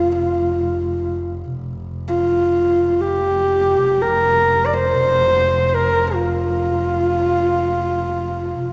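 A single horsehead fiddle and a double bass begin together, the fiddle singing a melody between F4 and D5 over the bass's low, sustained F1 drone. This brief fragment of Mongolian folk music moves in free time, with a proud, galloping mood. The fiddle sits up front with a husky, intimate tone, its horsehair strings bowed with an airy stroke, soft attack, light vibrato and gliding portamento. Beneath it, the bass is rich and close, bowed sul tasto with a soft attack and a touch of vibrato, and sits well below the fiddle in level. A concert hall reverb with a 2.6 s decay surrounds the pair, giving the duo a spacious, resonant setting through its 8.7 seconds.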